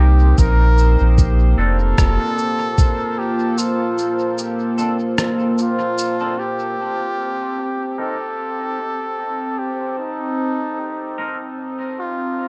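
Set at 75 BPM in 4/4 with a loose 16th-note swing, this hazy, meditative ambient dub excerpt sits in C dorian and moves from Bbmaj7sus2 to Cm7 at 6.8 seconds. A muffled, thumpy electronic kick drum and a tape-softened cabasa and rim click enter at 0.4 seconds, with the kick dropping out at 3.0 seconds and a break following from 3.6 seconds. A round, sine-like sub bass sits up front only briefly at the start, beneath a deep, moody pad of detuned sawtooth unison, wave-folding and ring modulation, coloured by chorus, reverb and 12-bit sampler grit. A cup-muted trumpet carries the melody in a soft, veiled classical style with light vibrato, its phrases trailing into dub echo. In the background, a twangy clean electric guitar plays phased, low-passed stabs with dub echo, and a filter sweep shapes it from 6.8 seconds. A resonant, bubbling texture of random filter steps drifts underneath, giving the dark production a gently shifting surface.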